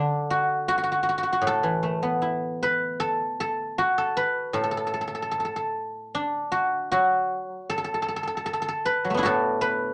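In a free, rubato pulse loosely around 77 BPM in 4/4, this serene and elegant piece of Chinese traditional music features a solo guzheng played with fingerpicks from 0.0 to 9.9 seconds, spanning A2 to D5. The acoustic zither sits up front with a mellow, silvery, ringing tone, wrapped in a moderate club-like reverb of about 0.6 seconds. The clip is cut from a longer piece.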